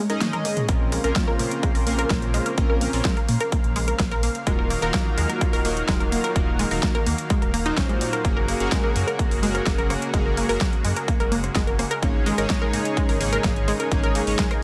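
Opening on a brief break with a drum fill from the overdriven big-room kit, a bright, gritty unison pluck arpeggio under a filter sweep and glossy chorused polysynth stabs with dub echo, this driving, emotional progressive house cut in Bb minor at 127 BPM drops in a punchy, up-front kick, a dark, rumbling detuned saw bass and a thick, warbling pad in the background at 0.7 seconds, the synths and bass pumping through a Bbmadd9, Ebmadd9, Gbadd9 and Absus4 progression.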